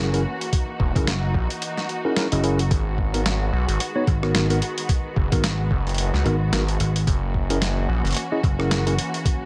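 Funky, gritty glitch hop at 110 BPM in G# minor with a swung 16th feel, this short dry excerpt sets veiled, muted strings with 12-bit sampler grit and sidechain pumping against mellow tine electric piano stabs with delay, an amped slap bass, a boom bap sampler-style kit of hi-hat, rim click and snare, a thumpy pitched-down electronic kick entering at 0.5 seconds, and an aggressive tube-saturated synth bass with oscillator sync and a resonant filter pluck from 0.8 seconds, over F#7 and G#m7 chords.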